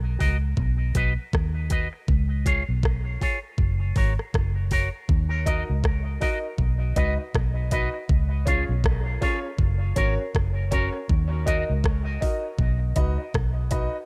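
An echo-heavy digital ambience surrounds this hypnotic, deep dub reggae piece, which rolls with a gentle swing. Up front, a dark, round, foam-muted vintage electric bass sits with a layered, tape-warm dubstep drum kit of knocking kick, bright hi-hats and rim clicks, while a clean, twangy picked electric guitar through an envelope filter casts dub echoes across the opening break. From 5.5 seconds a polished baby grand piano adds present stabs, also trailed by dub echo, as the bass and drums carry on to the end.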